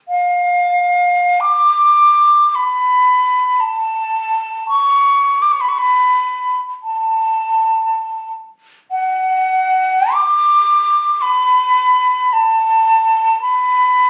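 Classical and expressive, this serene, nostalgic excerpt cut from a longer piece features an unaccompanied concert flute, airy and hollow with a straight, tongued tone placed up front, playing freely in rubato 4/4 at 42-60 BPM between F5 and D6 from 0.1 to 14.1 seconds, captured on a phone in a room with light club reverb and compression.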